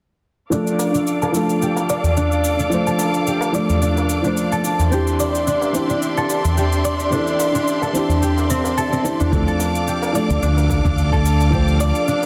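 Opening at 0.5 s with a boxy, felt-muted upright piano with audible action noise and mellow, thumb-plucked concert harp arpeggios, both shaped by filter sweeps and delay, over lush bowed strings with vibrato, 12-bit sampler grit and sidechain pumping, plus an overdriven cabasa, this meditative, hypnotic organic downtempo piece in D minor at 109 BPM with a light 16th-note swing adds a low-tuned, ringing tabla at 0.7 s before a round, punchy fretless electric bass on D2 and a soft, tape-toned electronic kick arrive at 9.3 s, the music sitting in a moderate hall reverb under a dense, heavily limited master.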